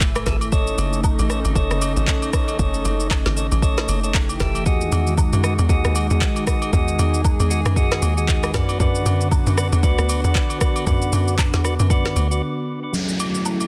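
Amapiano with a relaxed, soulful feel and a lightly swung groove, cut from a longer piece. An electronic R&B drum kit sits up front with a soft kick, woody snare, handclaps, rim click and shaker, roughened by overdrive and vintage sampler grit, while agogo bells and woodblock add close, dry accents in the background. A tight, punchy log drum bass with a fast attack and decaying tail drives the low end until 12.4 seconds, when a brief break opens up. Above it, a lush, detuned unison pad holds thick, warbling chords that pump against the beat under a low-pass filter, and a mellow, dark tonewheel organ punctuates with percussive stabs through a stopped rotary speaker and digital delay. The harmony moves through rich ninth and sixth chords before returning home at 12.9 seconds, where soft, round electric-piano-like keys with chorus and tremolo enter alongside an electronic downlifter. The dense, heavily limited modern master carries a digital ambience.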